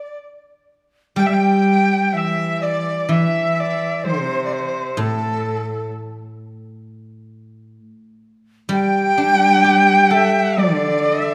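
A lush recital-hall reverb with a long tail surrounds this short excerpt of Chinese traditional chamber music, which moves in a free, rubato 4/4 with a festive yet pastoral mood. A single dark, woody erhu carries the melody up front, bowed with vibrato and sliding portamento. From the first moment a bamboo dizi joins it in the same register as a second line, its buzzing membrane, airy tone, crisp chiffing attacks and unsteady quality adding a lifted shimmer. At 1.2 seconds a lower second line arrives from a solo cello, bowed with vibrato and sounding biting and intense. The guzheng enters at the same moment as accompaniment, its fingerpicked strings ringing with a silvery resonance.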